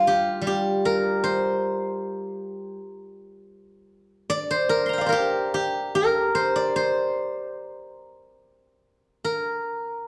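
A ringing, silvery steel-string zither played with fingerpicks sits up front as the lone voice in this flowing, serene Chinese traditional solo, moving freely in rubato around 64-79 BPM in C shang mode and spanning G3 to C6 across a short 10.1-second passage cut from a longer piece, its bright tone set inside a dark production with moderate recital hall reverb.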